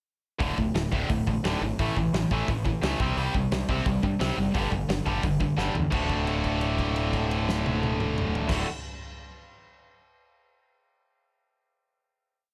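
A lightly reverberant, up-front mix carries this short, upbeat and rebellious punk rock piece, where two tight, bright distorted guitars chug palm-muted eighth-note riffs over a growling, overdriven picked bass and a big, dark acoustic drum kit with a fat snare and punchy kick driving a fast punk groove, all starting together at 0.4 seconds before a drum fill at 5.6 seconds lands on a final held chord that rings until the end.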